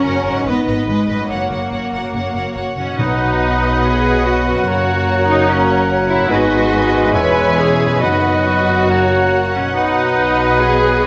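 Urgent and dramatic, this rubato classical passage opens with an intense violin section carrying the melody over a smooth second violin line, focused violas, a bright, ringing harp, and lush cellos with smooth double basses, until at 3.0 s a soft-mallet timpani stroke ushers in a mellow flute, clear oboe and clarinet, a mellow bassoon and a dark, distant French horn section, all bathed in recital hall reverb.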